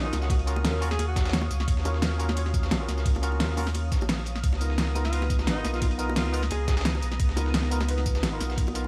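A melancholic, rolling liquid drum and bass excerpt opens with a close-miked alto saxophone phrase, gritty with vintage sampler crunch and delay, over a worn, slightly out-of-tune electric piano, a detuned sawtooth pad pumping under chorus and a deep, round sine sub bass up front, while a knocking electronic kick, a layered pop kit with fat snare and crisp hats, an overdriven dusty sampler-style kit and soft, low-tuned bongos roll beneath, the saxophone returning from 5.0 to 6.8 seconds after the chords move from Ebm9 to Db13.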